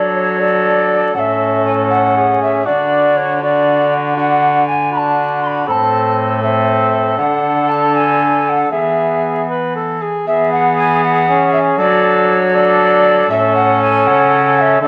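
From the first beat, a hollow alto recorder with a touch of chiff carries the melody of this festive, courtly renaissance-style consort dance in 6/8 at 79 BPM, joined by a mellow, close-miked cor anglais on the second line, a brilliant trombone in accompaniment and a rich, gut-string cello on the bass, the ensemble set in a wet stone room under vinyl crackle as this excerpt moves through D, A, Am and E harmonies.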